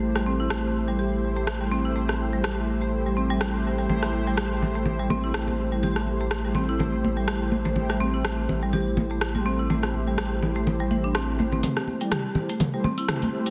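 Mellow, brassy synth stabs with chorus and delay open this driving afro house excerpt in A minor at 124 BPM alongside a round, deep analog bass on an Am7 chord, joined at once by woody marimba arpeggios through a low-pass filter and delay and a tape-tinged deep house kit of hi-hat, rim click and toms with a clipped snare; damped, high-tuned congas enter at 3.9 s, and at 11.6 s the bass stops as a drum fill and a filter sweep on an analog polysynth build up through a lush hall reverb and a dense, heavily limited master.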